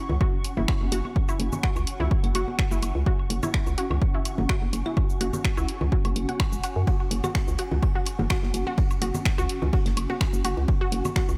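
A hollow, bouncy FM bass knocks up front through this hypnotic, sparse minimal techno excerpt at 126 BPM with a light 16th-note swing, pumping against a punchy, tape-warm kick, while a squelchy, resonant blip pluck with chorus and delay, a blurred granular cloud pad, delayed congas, woodblock and claves, snaps, hi-hat and shaker from an analog drum machine, and, from 6.9 seconds, a very quiet acoustic kit's ride and snare fill out a lightly ambient space.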